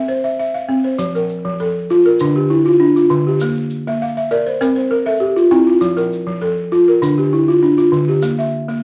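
A straight 4/4 pulse carries this joyful, hypnotic West African xylophone music, a short passage taken from a longer piece. Up front, a woody, buzzing balafon struck with rubber mallets plays arpeggios over a cycling chord progression from the very start, adding a fill between 3.9 and 5.8 seconds, while a grainy, bright tube shaker enters at 1.0 seconds, sitting well back in the mix. The recording is dry and gritty, with cassette tape and transformer saturation colouring a small room ambience.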